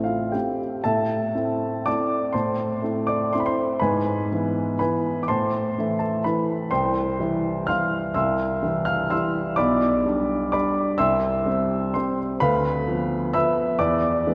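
An intimate, woody upright piano, up front with audible action noise and long, polished sustain, plays a wistful, elegant classical waltz in A minor alone for the full 14.3 seconds, moving in rubato 3/4 between 114 and 134 BPM through chords from Am to C and G/B before arriving on E, set in a dark, wet church reverb in this short passage cut from a longer piece.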